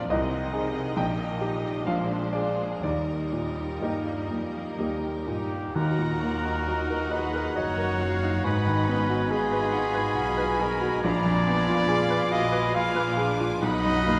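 Lyrical and passionate, this romantic piano-and-orchestra passage, cut from a longer piece, moves in a rubato 3/4 at around 60-71 BPM from Eb major into Eb minor at 5.8 s, with an up-front, brilliant baby grand carrying the melody over lush bowed violin, viola, cello and double bass sections, before a close, soft-attacked trumpet adds stabs from 5.3 s and a second, distant violin section takes up a melody alongside pure tongued flutes, a mellow roomy oboe, a very quiet clarinet and a brief touch of hard-mallet timpani, all set in a wet concert hall reverb.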